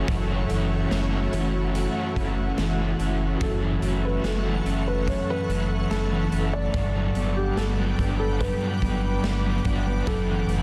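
Haunting and melancholic, this dream pop excerpt drifts at 72 BPM in F# minor, with a shimmering, ethereal pad, a dark clean electric guitar playing arpeggios through analog chorus and tape echo, a crunchy double-tracked overdriven guitar with tremolo and lush chorus, a deep sine-like sub bass up front and a gritty, saturated garage drum kit in a bright stone room, before a soft felt-muted upright piano takes the melody with tape echo at 3.4 s as the harmony shifts to F# phrygian and moves from F#m7 to Gmaj7 and back.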